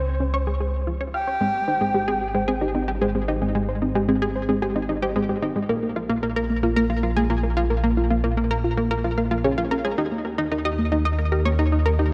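A straight 4/4 pulse carries this expansive, luminous stretch of ambient, sequencer-driven space music: a bright, round analog pluck riff and a fat, thick analog bass sit up front throughout, a breathy, flute-like synth lead with vibrato sings only until 2.4 seconds, and a warbly, dusty lo-fi pluck with phaser enters at 1.4 seconds to spin arpeggios, all bathed in a lush hall reverb as the chords move from Dbmaj7 through Abmaj7 and Bb7(no3) to Eb.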